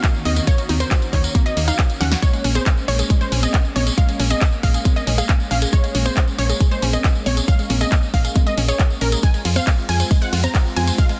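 A punchy, layered electronic kick sits up front from the opening moment of this uplifting trance excerpt. Alongside it plays a house kit of punchy snare, bright hats, handclaps, congas, tambourine and ride cymbal, with its hats, cymbals and percussion pumping against the kick. A round, dark FM bass with a fast attack enters at 0.3 seconds, and a drum fill lands at 2.0 seconds. The lead is a detuned sawtooth unison pluck with a noise layer and tape echo, carrying a driving, soaring melody. Beneath it, a second, wave-folded pluck plays short-decaying arpeggios in the background. A lush supersaw pad sustains the chords behind them with a slow attack, a moving notch and phaser, all moving from Ebm7 to Bbm7 and on to Fm, in a dry, dense, heavily limited modern mix.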